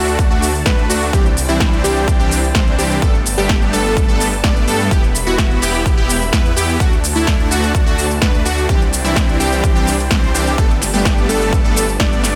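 A punchy, up-front electronic kick drives this powerful, anthemic festival progressive house excerpt at 127 BPM in a straight 4/4, alongside a big-room kit with a punchy snare, crisp hats and shaker, both tape-warm and re-recorded in a large room. Huge, lush supersaw chords carry the riff through D, Cadd9, Gadd9 and Em with sidechain pumping and delay, over a thick detuned saw bass with chorus and pumping. Beneath them, a catchy, mellow plucky unison lead with vibrato and a moving notch plays arpeggios in the background, while a very quiet symphonic string section sustains smooth, bowed chords, all kept dry.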